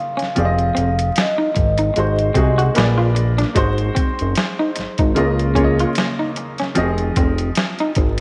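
A mellow vibraphone played with soft mallets rings out a short, metallic melody over a clear baby grand piano at the very start, its slow motor vibrato shimmering until it falls away at 2.7 seconds. This sultry, soulful neo-soul and R&B excerpt moves at 75 BPM in 4/4 with a 57% swing on the sixteenths, its harmony drifting from Fm7 through Ab7, Bb7b9 and Db69 before returning to Fm7. Up front, the piano carries the accompaniment with a natural, short-sustained tone, joined almost at once by a gritty, pitched-down boom bap kit with a thumpy kick, medium-tuned snare and hi-hat. A fat analog bass enters at 0.4 seconds, thick and detuned with sawtooth and square-wave colour and a moving notch, sitting loudest in the blend. An electric guitar through a small old amp adds a picked, slightly broken-up second line, while a moderate echo chamber reverb and vinyl crackle give the whole piece a dusty, lived-in feel.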